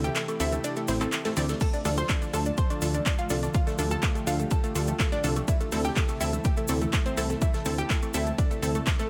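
Emotional and expansive, this progressive house excerpt in D minor moves at 124 BPM in a straight 4/4, cut from a longer piece. It opens on a short break over an A minor chord, and at 1.6 s the punchy, overdriven electronic kick arrives up front as the harmony shifts to D minor, returning to A minor at 5.5 s. A round, bright analog pluck spins arpeggios through chorus and tape echo, while a lush, detuned unison pluck adds stabs, and a funky plucky analog bass with ring-modulated sawtooth and pulse tones sits firmly up front; all three pump against the kick. Behind them an airy, breathy pad holds soft sustained chords with slow attack, chorus and phaser, also ducking with the pulse. The rhythm bed layers an overdriven pop drum kit with metallic hats, handclaps, crash and rim click, a grainy, close and dry tube shaker, very quiet woodblock and congas, and a very quiet open jazz kit with dark cymbals and a medium-tuned snare, all tied together by light reverb.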